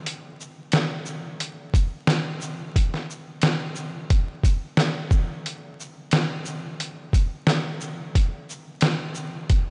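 A reflective, gritty hip hop groove at 89 BPM in 4/4 with a 57% swing on the 16ths opens at 0.1 seconds on a boom bap sampler-style drum kit, its compressed, pitched-down, tape-warm hits of thumpy kick, medium-tuned snare, hi-hat and shaker sitting up front, washed in a heavy church reverb with vinyl crackle and a dulled top end, in this short excerpt of a longer piece.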